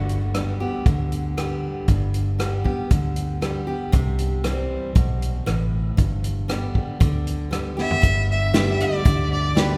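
Honky-tonk and classic country at 117 BPM in a straight 4/4, this short G major excerpt feels sunny and heartfelt, cut from a longer piece. A bright, full-bodied picked steel-string acoustic guitar carries the accompaniment from the start, moving through G, C and back to G, while a dark, round, foam-muted fingered electric bass holds down the low end with a punchy, amped tone. The vintage drum kit sits up front with a punchy kick, a medium-tuned snare, rim clicks, hi-hat and toms, its top rolled off and its sound natural and small-roomed, and it plays a fill at 7.8 seconds. At that same moment a clear, focused fiddle enters up front with the melody, a single bowed player with light vibrato and a smooth top. A very quiet baby grand piano joins at 8.5 seconds, intimate, with audible action noise and long sustain. The whole recording sits in a wet cathedral reverb with a 4.6-second decay, giving it the air of a church or concert hall.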